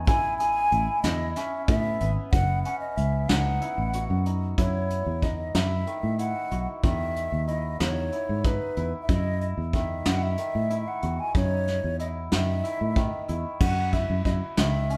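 A shimmering, ringing hammered dulcimer spins arpeggios alongside a round, foam-muted fingered electric bass from the first moment of this tense, intricate progressive instrumental, cut from a longer piece. Almost at once a brushed drum kit joins with a punchy kick, medium-tuned snare, hi-hat, and dark crash cymbals, sitting up front with a roomy character. An airy, hollow silver concert flute carries the melody in a mellow tone with vibrato and tongued notes. The band moves at 186 BPM in eighths through a straight 7/8 in F# dorian, with harmony passing from Amaj7 and F#m6 to F#m7 and Emaj7. At 13.6 seconds the flute takes a solo over an open F#5. The group plays live together in one large studio, and a moderate reverb gives the ensemble a sense of space.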